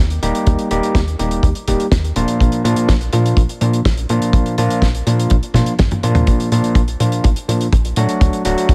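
Gritty, overdriven tine electric piano stabs through a combo amp sit up front with tape echo in this bittersweet, melodramatic italo disco excerpt at 124 BPM, riding a tight, punchy sawtooth-and-square sequencer bass with a plucky filter, a dry acoustic kick that enters at 0.5 seconds, and a damped 70s drum kit with a fat snare, hi-hat and toms whose fill from 5.5 seconds carries into a second section at 6.3 seconds, moving over Eb, Bb and D chords in a small room ambience with tape saturation.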